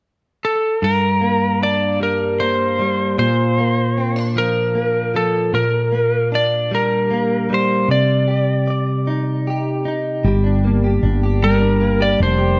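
A dramatic, melancholic pop piece in G minor, cut from a longer work, moving at a slow 51 BPM in a straight 6/8. A lightly driven lead guitar carries the melody from 0.4 seconds, its twangy, slightly broken-up tone set up front and touched with slapback echo. Just behind it, at 0.8 seconds, a double-tracked clean electric guitar recorded direct adds bright, compressed picked accompaniment spanning low to high. The chords move from Gm through Bb and Gm/Bb to Cmadd9 before returning to Gm. At 10.2 seconds a new section begins as a woody fretless bass enters with a growly, round voice, sitting slightly louder than the guitars. A moderate echo-chamber reverb wraps the dark production in digital ambience.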